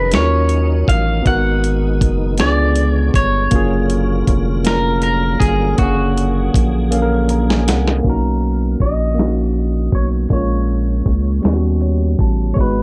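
A rubbery, bouncy square-wave bass sits up front in this intimate, sensual slow six-eight R&B excerpt, joined by a gritty, compressed sampler-style drum kit with a thumpy kick, and a clean, twangy picked electric guitar carrying the melody. A worn, slightly out-of-tune tine electric piano, lightly overdriven through a combo amp, plays accompaniment and adds fills around 6.9 and 11.4 seconds. A full tonewheel organ with chorus vibrato and slow rotary speaker holds sustained chords in the background until 8.0 seconds, all within a dark, dry, low-passed production.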